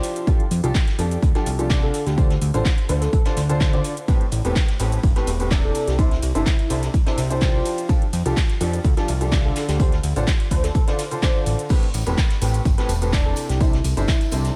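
Piano house with an energetic, soulful feel, built on a bright, woody upright piano riff treated with lush chorus, sidechain pumping and analog delay, over a punchy, up-front electronic kick and a fat, sawtooth analog bass that pumps beneath the F69, Dm7, Am9 and C69 changes. A house drum kit adds metallic hats, handclaps, ride, crash and shaker, while a very quiet brushed vintage kit sits distant in a small room. An airy, dreamy lead with vibrato and delay floats in the background from 1.8 seconds, and a faint tambourine joins at 11.7 seconds in this cut from a longer piece.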